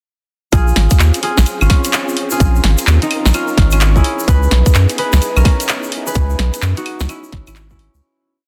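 A skipping two-step garage groove in common time drives this moody and soulful piece, with a tight two-step kick and a cracking snare, handclaps, claves and swung hi-hats bouncing over the top. A grainy egg shaker plays hand-played sixteenths from a distant, large-room space. A deep, saturated sine sub bass sits up front with a syncopated riff. Above it, a fingerpicked concert harp rings out a repeating riff in thirds and sixths, trailed by dub echo. A silky vintage string machine holds a mellow, slow-attack pad in the background, colored by ensemble chorus and sidechain pumping. The chords move from one minor-ninth harmony to another at 4.0 seconds within a dense, heavily limited modern master, and the piece fades out from 5.5 seconds.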